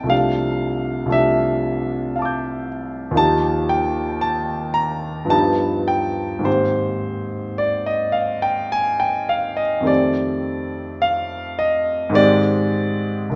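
A moderate recital hall reverb surrounds an intimate, up-front concert grand whose long sustain, deep bass and audible action noise give the sound a close, polished presence. This wistful, mysterious impressionist solo piano piece moves in a slow, rubato 3/4 at around 50-59 BPM, spanning C2 to G6 across 13.4 seconds cut from a longer work. Its shadowy harmonies drift from Dm11/C through Ebadd9, Gaug7 and Abmaj9 to F13, settling on Abmaj7 at 12.2 seconds.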